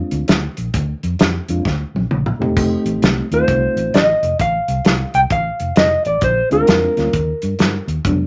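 Soulful and swaggering, this short electric blues shuffle moves at 131 BPM in 4/4 with a swung eighth-note feel, cut from a longer piece and sitting in a moderate studio reverb. A reedy electric piano with fast tremolo, heard through its built-in speakers, carries the accompaniment over a round, foam-muted fingered bass and an up-front soul drum kit with dark cymbals, a tight kick and a rolled-off top, which plays a fill from 1.7 to 2.6 seconds. At 3.3 seconds a clean, dark, fingered electric guitar enters up front with the melody over changes from Bb7 to F7 and back, closing on Eb.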